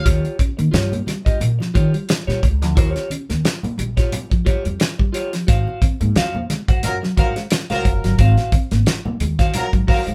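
Swung sixteenths in 4/4 push this cool, driving funk excerpt along on a dry, up-front 70s drum kit with a fat snare and tight kick, a woody, growly pizzicato upright bass, and damped, low-tuned congas tucked in the background. A twangy, picked clean electric guitar comps over Eb9 before the harmony shifts to Ab13 at 5.5 seconds, while a dark, fingered second electric guitar carries the riff. At 6.8 seconds a smooth-topped horn section with light vibrato adds a second line, and the band plays live together in one room with moderate studio ambience.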